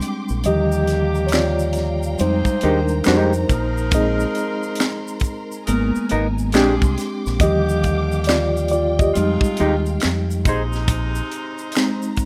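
Smooth and relaxed, this short cut from a longer piece is a slow neo-soul and R&B groove at 69 BPM in Eb major, with a swung sixteenth-note feel in 4/4. A reedy, mellow electric piano carries the lead with a fast tremolo, sounding through its built-in speakers and sitting up front, while a lush bowed string section holds sustained chords underneath with vibrato and portamento. A tight, acoustic funk kit with a high-tuned snare, hi-hat and finger snaps keeps time from a small room, its punchy kick dropping out between 0.4 and 2.2 seconds, and a close tube shaker with handclaps and snaps adds light percussion. A round, dark fingered electric bass enters at 0.3 seconds, an edgy saxophone section punctuates with tight stabs, and a clean, picked hollow-body jazz guitar plays a second line from 2.6 seconds. The harmony moves through Ebmaj9, Fm9, Bb9sus4, Abmadd9 and Bb13 before cycling back, all wrapped in studio reverb with the loose feel of a rough home demo.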